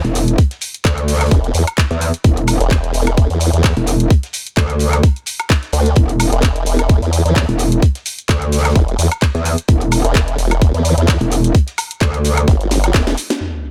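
A metallic, FM-edged wobble bass and a detuned, formant-swept companion pump against an up-front electronic kick from 0.4 seconds in this gritty, swaggering bass house excerpt at 129 BPM in E minor, with a swung, cracking garage kit filtered on its snare, hats and percussion, a muffled lo-fi soul kit buried far beneath, a drum fill from 12.7 seconds and a sub drop impact at 13.4 seconds, all in a dry room.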